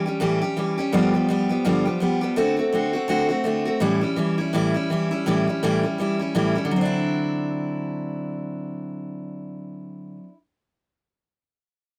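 Rock with a rollicking, rowdy mood, this brief excerpt from a longer piece runs at 166 BPM in 4/4 with a swung eighth-note feel, set in D mixolydian. A lone picked steel-string acoustic guitar carries the whole piece, its dreadnought tone bright and full-bodied as it sits up front across a span from G2 to G4. The chords move from A7 to G7 and D7, return to A7, and land on a D9 at 6.7 seconds as the passage shifts into its final section. The sound has the rough character of a rehearsal-room recording, with warm saturation coloring the tone and a moderate booth ambience lending a short, close tail.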